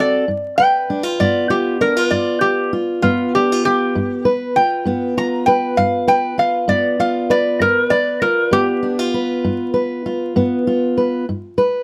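A rollicking, gritty acoustic country blues in 12/8 at 65 BPM in G mixolydian opens on a G7 with a bright, nasal, metallic resonator slide guitar, fingerpicked and played with a steel bar, taking an up-front solo over a dark, woody fingerpicked steel-string acoustic guitar with old strings, until the resonator stops at 9.1 seconds and the acoustic carries on alone to 11.8 seconds, all captured with close, detailed microphones, light reverb and vinyl crackle in this fragment cut from a longer piece.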